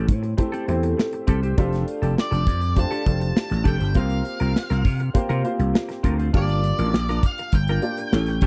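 A growly, punchy slap bass drives this glossy, urban excerpt of polished 1980s jazz-funk pop, joined by a polished acoustic drum kit with an airy crash, hi-hat and punchy kick, a clean, hollow-bodied electric guitar riff shimmering with lush chorus, and an intimate grand piano whose audible action noise sits under its own analog chorus, while from 2.2 seconds a dark, picked octave-fuzz lead guitar with slapback echo adds the melody, all captured in a dry, close 1970s-style studio sound.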